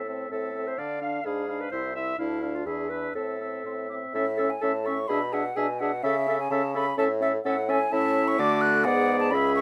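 A mellow, hollow flute carries the melody above the ensemble in this lively, graceful classical-period movement for wind quintet, played in a quick 2/4 with a rubato feel and cut from a longer piece. A distant, roomy oboe sings a second line with vibrato, while a close-miked clarinet and a soft-attacked French horn fill in the accompaniment, and an up-front bassoon anchors the bass. The music shifts from minor to major at 4.1 seconds, all in a light reverb.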